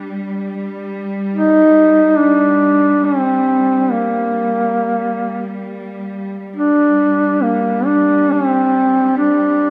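Steeped in a long church-like reverb, this short cut from a longer Caucasian folk lament unfolds in free time with a solemn, longing mood. A bowed cello section holds a focused, clear drone from the very start, its vibrato adding a quiet shimmer beneath. At 1.3 seconds a mellow solo duduk enters up front, singing a folk-style melody with scooped notes, expressive vibrato and a smooth top.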